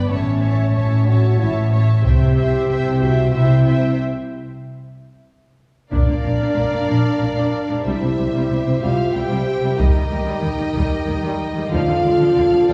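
Heard from further back in a reverberant scoring stage, this triumphant, majestic passage from a longer cinematic orchestral score moves in a stately 3/4 at 93 BPM, as mellow, roomy French horns hold sustained chords over a lush bed of bowed strings, with a vibrato-rich violin section on a second line, focused violas in accompaniment and smooth cellos with woody double basses on the bass, while hard-stick taiko drums enter at 2.0 seconds, a brief break opens at 4.0 seconds, and a smooth violin melody enters with the second section at 5.9 seconds.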